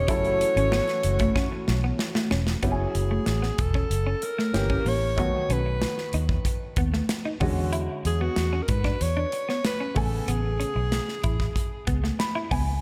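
A breathy alto saxophone leads this polished 1980s jazz-funk pop excerpt with a nocturnal, urban mood, its subtoned, scooped notes and light vibrato sitting up front in slapback echo and digital delay. Beneath it, an intimate baby grand piano with audible action noise and subtle chorus, a chorus-drenched clean electric guitar riff, a round, foam-muted fingered bass and an airy, polished studio drum kit with a punchy kick move through chords from F#m9 to Amaj9. A detuned sawtooth pad glows in the background only until 2.6 s, closing alongside a drum fill, while a piano fill arrives at 11.9 s, all in a lush hall reverb with a big arena sound.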